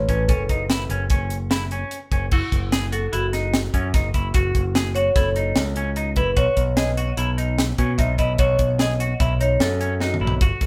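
Marimba and bright picked electric bass open this brooding, intricate progressive instrumental in 5/4, joined at once by a semi-hollow electric guitar playing compressed, clean arpeggios with a warbly pitch drift, and a crisp fusion drum kit with a punchy kick and high-tuned snare. From 2.3 s the close-miked, dry marimba, touched by digital delay, takes a solo over an F#7 chord with its third omitted, moving on to Bsus4, and a drum fill arrives at 10.0 s. The band plays live in one room with moderate studio reverb, keeping the drums and bass up front, and the clip is cut from a longer piece.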